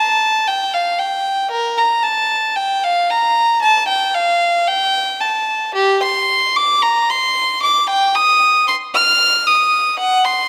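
A single bowed violin plays alone from the first moment, its rich gut-string tone reedy and close in a period style, ranging from G4 up to F6 in this 10.5-second fragment of a baroque-style suite movement. The mood is introspective and grave, moving at a slow 57 BPM in 4/4 with a flexible rubato feel. The up-front violin sits in a moderate concert hall reverb that lingers for about 2.0 seconds.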